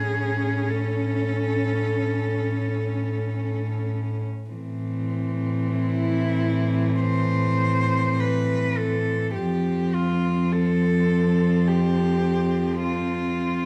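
Tender and serene, this slow, rubato classical passage for cello ensemble, cut from a longer piece, moves at 44-54 BPM in 4/4 from A major into A minor at 4.5 s and on to an F chord at 9.4 s, with an intimate, up-front sul tasto melody cello carrying light vibrato and an airy bow, a dark second cello with vibrato and a smooth top, a pure, floating accompaniment cello and a warm, distant bass cello, each bowed by a single player in light reverb.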